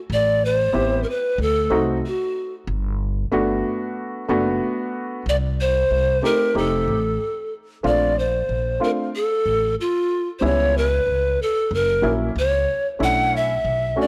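Jazz-hop with a relaxed, smooth mood at 93 BPM, swinging its sixteenths over a chord progression that begins on Am7, D7b9 and Gmaj9 and settles on Bm11 by 13.0 seconds. A breathy, reedy bamboo pan flute carries the melody up front with vibrato and a soft, chiffy attack. Beneath it, a worn, slightly detuned upright piano enters at 0.7 seconds with accompaniment, and a woody pizzicato upright bass with steel strings and transformer saturation holds the low end, all set in a small room with light reverb and transformer saturation across the overall sound.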